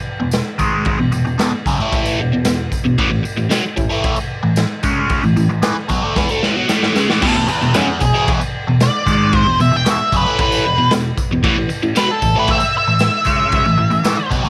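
A straight 4/4 garage rock groove at 114 BPM in E mixolydian drives this rowdy, raw excerpt, with a gritty, saturated acoustic drum kit pumping in a small room alongside a jingly tambourine tucked in the background, and a biting, double-tracked overdriven guitar with a phaser picking the riff up front over E and A5 chords. A drum fill at 6.2 seconds leads into a dark, fuzz-soaked lead guitar solo that enters at 7.2 seconds, its distorted octave tone riding high in the mix. Light reverb gives the whole performance a compact, live-room feel.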